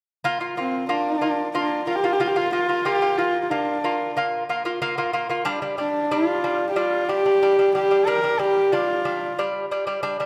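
A husky, nasal horsehead fiddle carries the melody with portamento and an airy bow up front, entering at 0.6 seconds over a bright, delicate fingerpicked lute playing arpeggios on double gut strings from 0.2 to 10.3 seconds, in this proud, galloping Mongolian folk excerpt at 92 BPM in a Bb gong mode, set in a moderate concert hall reverb.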